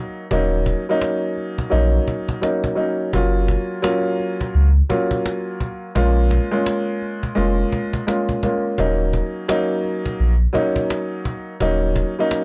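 Boom-bap hip-hop with a moody, swung feel, cut from a longer piece, where a woody upright piano trimmed by high- and low-pass filters sits up front over a deep, mellow, tube-saturated sub bass with octave and a hard-handed cajon with faint snares in a small room, all captured as a dry, gritty hardware recording.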